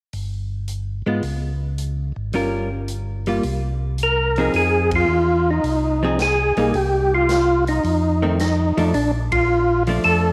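A late-night, bluesy soul jazz organ trio excerpt in F minor at 109 BPM opens with a mellow, round tonewheel organ bass turning on a slow rotary speaker alongside a swinging big-band drum kit with punchy kick and ride cymbal, then a dark, clean hollow-body jazz guitar enters at 1.1 seconds with picked accompaniment, and at 4.0 seconds a lightly overdriven, percussive tonewheel organ takes the melody through chorus vibrato before band accents land at 4.8 and 9.2 seconds, all set in a moderate echo chamber reverb.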